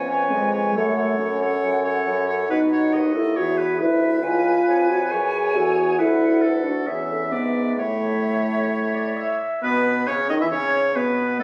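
In a straight 4/4 at 136 BPM, this quick, graceful and cheerful classical-period wind quintet movement in A major sets an airy silver flute melody over a clear oboe second line, with a mellow horn up front and a distant clarinet in the background filling the accompaniment, and a bassoon anchoring the bass, all heard in a wet recital hall as captured on a phone amid club ambience, with the chords moving from C#7/E# through F#m, B7 and E to settle on A before the harmony drops out at 9.6 seconds in this fragment cut from a longer piece.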